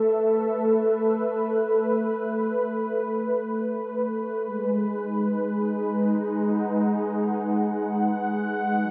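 Peaceful and weightless, this short ambient excerpt drifts in free time, carried entirely by a solo analog pad of detuned sawtooth tones with a soft attack and long, smooth sustain, sitting up front in the mix. Chorus and tape echo thicken the pad as it spans F#3 to F#5, moving from Asus2 to G#m7 at 4.5 seconds. A wet spring reverb and an echo-heavy mix wrap the sound in a hazy, floating space.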